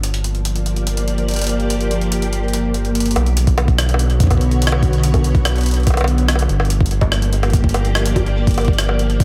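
IDM with an intricate, cerebral mood, moving at 144 BPM in a straight 4/4. This short excerpt, cut from a longer piece, opens on a silky vintage string machine holding sustained chords with a slow attack, colored by phaser and ensemble chorus and pumping against a sidechain. Beneath it, a round, deep analog bass sits up front, mellow and evolving, while a gritty, pitched-up jungle sampler-style kit of bongos, hi-hat and rim click trails tape echo behind it. The harmony shifts from Gm7 to Bmadd9 at 3.2 seconds, and a compressed, thumpy electronic kick joins at 3.5 seconds before the chords return to Gm7. Both drum parts carry the character of a large room, and the whole mix is echo-heavy with light reverb.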